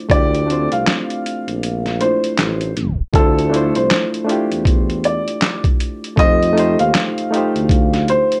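Lo-fi hip hop excerpt at 79 BPM with a melancholic, hazy swing in D minor, built on a gritty, pitched-down boom bap sampler kit whose thumpy kick drops out from 1.6 to 3.1 s around a tape stop at 2.8 s, alongside handclaps, hi-hat and snare, while a reedy, barky electric piano through its built-in speakers plays cassette-tinged Dm9 and F9 chords with plate reverb, a woody upright piano carries the long-sustained melody, and a mellow, distant tuba supplies scooped jazz bass notes.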